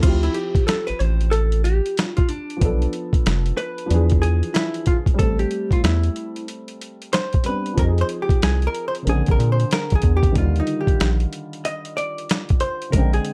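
A clean, hollow-body electric guitar solos from the first second of this mellow, nocturnal jazz-hop excerpt, over a woody, slightly detuned upright piano, a round, deep analog bass sitting up front, and a gritty, pitched-down boom bap kit of thumpy kick, medium-tuned snare, hi-hat and crash, with a 16th-note swing and a dark, dry production carrying the chords from Dm11 to Ebmaj9.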